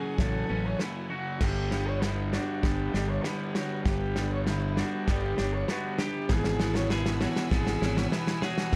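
Cinematic and euphoric, this short post-rock passage is cut from a longer piece and sits in a straight 4/4 build-up, with a drum fill running through its full 8.8 seconds. A distant, nasal cello carries the melody with a reedy gut-string tone and tape echo, while a very quiet studio string section holds smooth, vibrato-rich chords. A crunchy, double-tracked overdriven guitar drives a bright picked riff, and a twangy clean guitar picks arpeggios with tape echo in the background. A felt-muted upright piano adds mellow arpeggios with audible action noise. At 0.2 seconds a growly, punchy fuzz bass and a loose acoustic indie drum kit enter up front, the kit sounding crash cymbal, tight kick and a medium-tuned snare. The harmony moves from F#madd9/A to G at 1.4 seconds and then to Eadd9/G#, framed by a small room and a dark, warm production.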